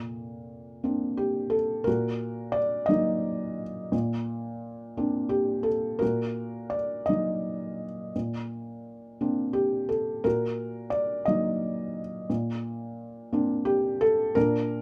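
A felt-muted upright piano plays alone from the start, its soft, dark tone close and intimate, with short sustain and audible action noise under the notes. This tender, calm classical fragment moves in a lyrical, rubato 6/8 at about 58 BPM in Bb major, gently rocking between Bbadd9 and Ebm/Bb chords. A light reverb surrounds the piano across the full 14.8 seconds.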